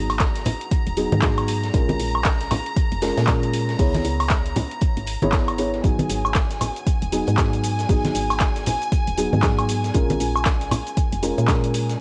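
Hazy and lo-fi like a home cassette recording in a small room, this moody, deep house fragment sets soft stabs from a felt-muted upright piano, with audible action noise and analog delay, over a round, woody FM bass, a high, intimate violin section bowed with light vibrato, a punchy, tape-toned analog drum machine of handclaps, hi-hat, shaker and woodblock, a gritty fusion kit's hi-hat and snare in the background, an overdriven electronic kick up front and bright, dry congas, while the piano, bass and strings pump as the chords move from G#m7 through A#m7 and C#m7.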